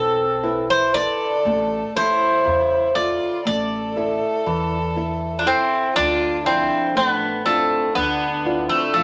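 Reflective and wistful, this short passage of Greek folk music, cut from a longer piece, moves in 9/8 with a straight feel. The bouzouki carries the melody up front, its picked double strings giving a metallic ring, with some strings doubled at the octave. Beneath it a single violin plays a second line with a soft attack, an airy sul tasto bow and light vibrato, sounding close and intimate. A small, fingerpicked nylon-string guitar supplies the accompaniment, while a pizzicato upright bass adds a woody, growly low end from its steel strings. All four play together throughout, and the harmony shifts at 6.0 seconds to a Dmadd9 chord as a new section begins, all set in a wet studio reverb.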